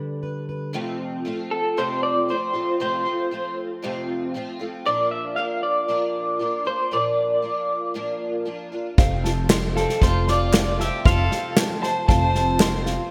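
In a straight 4/4, this uplifting indie folk excerpt opens with a slightly broken-up, lo-fi electric guitar melody through a small old amp, carrying tremolo and digital delay over a brief fingerpicked, jumbo-bodied plugged-in steel-string acoustic guitar. At 0.7 seconds a shimmering, octave-doubled twelve-string acoustic takes over the accompaniment with ensemble chorus, and at 9.0 seconds the arrangement builds as a punchy natural country drum kit with gated reverb, a woody, thumpy pizzicato upright bass, a soft felt-muted upright piano and a background upright piano playing chorused arpeggios all arrive, followed by crisp handclaps. A distant, reedy bowed fiddle adds a second line with digital delay from 9.8 seconds, all set in a bright 1980s-style digital production with lush hall reverb.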